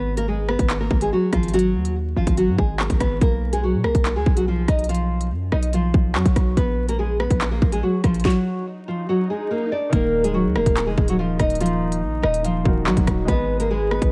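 A small-room ambience and a layer of vinyl crackle surround this ominous, tense drill excerpt, which moves at 143 BPM in a half-time feel in Eb minor. A fingerpicked nylon-string guitar carries the melody up front, its full-bodied classical tone softened by a low-pass filter. Beneath it, a hard-hitting 808-style bass sits equally forward with a punchy, sine-based weight and a noisy edge, while an overdriven electronic drill kit drives the groove with a hard-clipped kick, sharp snare, crisp hi-hats, handclaps and rim clicks. The beat drops out at 8.2 seconds as an electronic swell bridges into the next section. At 9.9 seconds a clear concert grand piano, filtered and long-sustaining, and a close-miked brass ensemble holding bright sustained chords join in the background, as the harmony moves from Ebm back to Abm.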